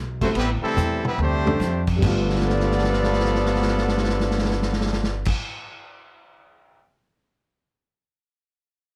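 A woody, growly upright bass opens this brassy, swinging big band cut at 144 BPM in G mixolydian, and at 0.2 s a clear trumpet section with light vibrato takes the melody over warm, soft-edged trombones, a very quiet grand piano and a gritty vintage kit with dark cymbals. The harmony moves from Am7 through D7sus4 to G9, and drum fills break in at 0.8 s and again across 2.2 to 5.2 s. The close, detailed sound carries light reverb; the piano rings on to 5.6 s, and the drums then play on alone until 6.8 s.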